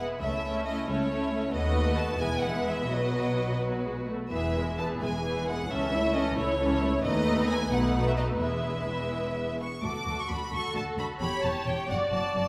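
Lively and graceful, this quick classical-period movement for string orchestra moves in a rubato 6/8 at about 83-92 dotted-quarter beats per minute in E major. A clear, intense first violin section carries the melody with light vibrato over a dark, smooth second violin line, rich and lush violas, expressive cellos with soft attacks and portamento, and warm, even double basses. The whole ensemble sits in a reverberant recital-hall acoustic, and at 9.8 s the harmony turns toward D as a new section begins before the clip is cut off.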